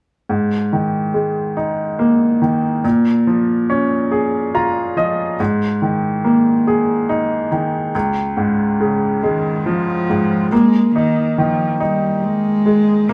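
A slow, straight six-eight pulse at 47 BPM carries this heartfelt, tender pop ballad excerpt, with a bright, brilliant upright piano setting out the accompaniment from 0.3 s over chords such as Absus2, Bbm7 and Db. The piano sounds intimate and up front, with audible action noise and long sustain, and it adds a fill at 4.1 s. At 9.2 s a single dark, woody cello enters close and up front with the bowed melody, its soft attack and vibrato set in a moderate studio reverb that suggests a band playing live in one room.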